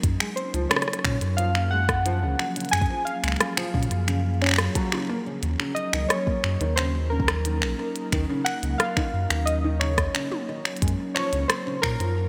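IDM in a melancholic, cerebral mood, this short passage cut from a longer piece drifts between Gbmaj9 and Ebm7 under a glassy, ethereal FM pad with ensemble chorus, a round sine sub bass and a very quiet, pulsing gated texture. A deep electronic kick sits beneath an up-front glitchy drum kit of finger snaps, clicky hi-hats, rim clicks and toms touched with delay, while a felt-muted upright piano, soft and intimate with audible action noise, plays arpeggios from 0.2 seconds through chorus and delay. From 0.4 seconds, warbly, nostalgic lo-fi synth keys carry the melody with detuned, decaying tones and a filter sweep, all set in a lush hall reverb with bright 1980s-style digital production.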